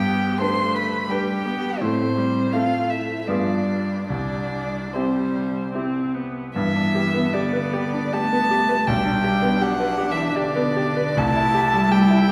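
In a rubato 3/4 at 70-88 BPM, this serene, slow romantic movement for piano quartet, cut from a longer piece, sets a dark, intimate violin melody played sul tasto with light vibrato over a rich, smooth cello second line, a bright, brilliant concert grand with deep bass and a focused viola accompaniment, heard from further back in a reverberant recital hall as the key moves from C major to G major at 6.6 s.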